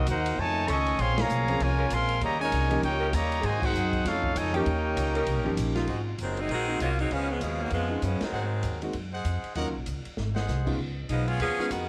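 A clear, up-front trumpet section carries the melody over a dark, distant trombone line in this swinging, energetic big band excerpt at 196 BPM, alongside a woody, growly pizzicato upright bass, a small-room drum kit with a boomy kick, roomy background saxophone chords and natural concert grand piano accompaniment, until at 5.9 s the music moves into Ab mixolydian, tight trumpet stabs enter and an edgy, close-miked saxophone section takes up the melody at 6.2 s, the whole band sitting in light studio reverb.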